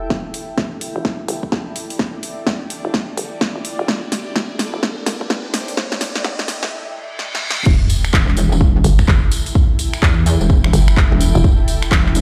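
Heard through a big sound system in a bare room with large studio reverb, this bouncy, gritty bass house excerpt in E minor at 127 BPM with a swung 16th-note feel opens with a hollow, knocking FM bass pumping beneath a blurred, evolving granular cloud pad, a punchy up-front kick and a big-room kit of punchy snare, metallic hats, handclaps, finger snaps and crash, while drum fills, a filter sweep, a riser and a reverse cymbal build toward the drop at 7.7 seconds, where a sub drop hits, a jingly close tambourine enters and a heavy, detuned, saturated pluck wobble bass pulses with chorus from 8.1 seconds.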